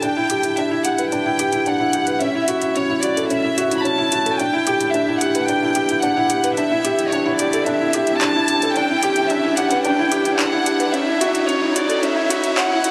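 A felt-muted upright piano plays in this short cut from a longer piano-and-strings electronica piece, its mellow riff sitting up front with audible action noise. Alongside it, a rich chamber violin section carries the melody close and intimate, bowed sul tasto with light vibrato and a soft attack. A deep house drum kit with handclaps and metallic, overdriven hats moves in a straight 4/4 beneath them. From 0.1 seconds, an electronic riser sits in the background, making the whole 12.9 seconds feel like one long build-up over chords that cycle through Em7, F#m7 and A7sus4. A huge ambient reverb surrounds the mix, and a high-pass filter and lossy compression artefacts colour the hypnotic, intimate mood.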